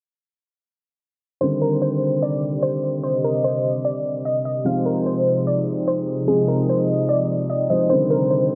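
Melancholic and eerie, this half-time hip hop excerpt in C minor moves at 148 BPM under light digital ambience and a low-pass filter sweep, with chords shifting from Cmadd9 to Fm7/C and back. From 1.4 seconds, a crystalline wavetable pluck carries the melody up front with a chorused sheen, alongside a velvety, vibrato-tinged synth lead with tape echo and a dark, mellow baby grand piano accompaniment. From 2.1 seconds, a warbling, detuned tape-like pad adds nostalgic, lo-fi sustained chords.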